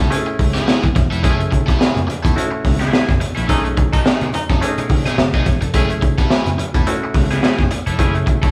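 Cool and driving, this short funk excerpt at 107 BPM in F# dorian rides a gritty, dark breakbeat kit with a punchy kick and high-tuned snare over a bright slap bass, a phased, scooped overdriven guitar, nasal overdriven clav stabs and very quiet low-tuned congas, all in a live-room studio reverb, as the chords move from F#m9 to a band-accented B13 at 3.5 seconds, where a breathy, whispered baritone saxophone slips in briefly before the return to F#m9 at 5.7 seconds.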